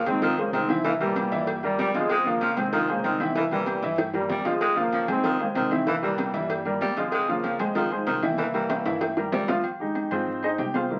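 Fiery, passionate salsa, cut from a longer piece, in which a mellow trombone section carries the melody over an alternating cycle of Fm7 and C7 chords while a growling, raspy baritone saxophone sits up front on a second line. A clear concert grand piano with deep bass and short sustain drives the accompaniment, backed in the background by a woody, thumpy pizzicato upright bass, bright high-tuned congas, round low-tuned cowbell and bongos, and ringing agogo bells and timbales, with drum fills at 4.0 s and 8.7 s. The horns drop out as the piano takes a solo from 9.6 s, and the whole track has the crackle of a very old 78 rpm record in a small, wet room.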